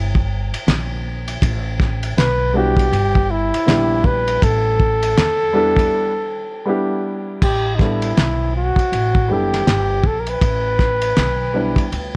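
A mellow, close-miked flugelhorn leads this nocturnal, cool jazz-hop excerpt, singing up front with light vibrato and scooped notes in a relaxed jazz style. Beneath it, a pizzicato upright bass with a woody, growly bite on steel strings anchors the low end from the start, opening on an A9sus4 harmony, while a cloth-damped drum kit enters at 0.2 seconds with a thuddy, muffled character: a fat snare, tight kick, dark cymbals and a saturated, gritty edge with a rolled-off top. A dark upright piano arrives at 2.5 seconds, adding mellow, short-sustained accompaniment. The groove swings lazily on sixteenths in a small room, pausing for a break at 5.9 seconds before moving into a new section at 7.4 seconds. A brief piano fill near the close caps a passage that feels cut from a longer piece.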